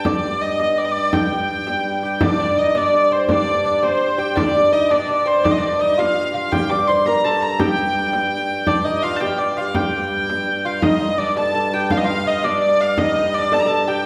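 Heard from further back in a scoring stage with a wet, lingering reverb, this cut from a longer medieval dance in a straight 6/8 feels driving and mysterious. A clear, earthy hurdy-gurdy sits up front with the melody, its wheel-bowed, keyed line ranging from C5 to D6 across the whole passage. Beneath it, a hand-pumped harmonium holds a reedy, nasal drone on G2, close-miked and dry, with a breathing quality. A frame drum played with soft hands adds warm percussion from 0.1 s, carrying the small-room character of its own sound. At 2.0 s a fingerpicked lute enters with a bright, delicate second line on gut double strings, some doubled at the octave, before the music shifts to a new section at 10.8 s.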